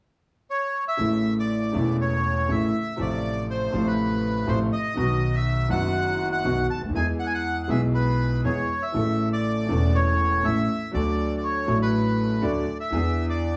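A reedy, mid-forward bandoneon carries the melody from 0.5 s in this passionate, playful tango excerpt at 121 BPM in A major with a rubato feel, joined at 1.0 s by a worn, boxy, up-front grand piano with audible action noise and long sustain and a woody, thumpy pizzicato upright bass, the band playing live together in a large studio bathed in wet reverb.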